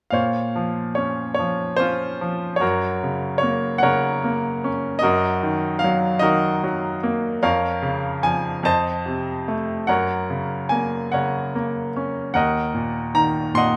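Classical solo piano in Bb minor, melancholic and wistful, with a bright, intimate baby grand carrying a lyrical, rubato line in a slow 6/8 at 49 BPM in dotted quarters, its short-sustaining, up-front tone and audible action noise caught by close, detailed microphones in light reverb as harmonies move from Bbmadd9 through Gb, Ebm/Gb and F7 to Ebm across this brief passage cut from a longer piece.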